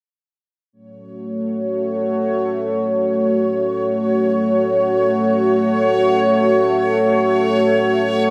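A sweeping, resonant pad of detuned sawtooth and sine tones with a sub octave holds an F# minor chord up front from 0.7 s, its chorus-thickened body evolving under a filter swell, while a quieter, bright bubbling texture of random filter steps fades in on a high C#5, all soaked in lush hall reverb in this expansive, mysterious fragment of free-time ambient space music.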